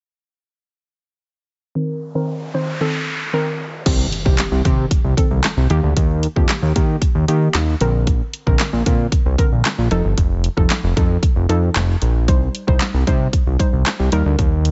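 Dance-pop at 114 BPM in C dorian, driving and confident, this excerpt is cut from a longer piece and carries a dry, close sound with little reverb and a dark top end. A soft, round pluck opens at 1.8 seconds, a gentle, decaying synth with chorus and pumping sidechain, its low-pass filter sweeping over the Cm7 chord while a noise sweep plays alongside it. At 3.9 seconds an impact lands as a fat analog bass and a pop drum kit enter together, moving the harmony through Cm, Eb, Bbadd9 and F7. The bass is thick and detuned with a sawtooth edge, sitting up front and pumping under the sidechain. The layered electronic kit brings a punchy kick, a fat snare, warm hi-hats, handclaps and crash cymbal, all placed forward in the mix to push the groove to the end.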